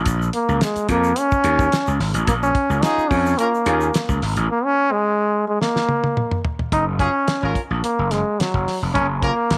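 A gritty, overdriven slap bass opens this hypnotic, funky groove, its growly, punchy low end sitting up front as a dry 70s drum kit with a fat snare, tight kick and rolled-off top falls in alongside it. A grainy tube shaker hovers in the background while a bright, close-miked trombone carries the melody with vibrato and a punchy, pop-style attack. At 2.7 seconds a distant, roomy horn section adds a second line with light vibrato, lending a warm ensemble glow behind the solo horn. The shaker drops out at 4.5 seconds as a silent gap opens, broken by a drum fill that leads into a new section and a chord change at 6.7 seconds. Light reverb gives the parts a little air, and the whole passage is cut from a longer piece.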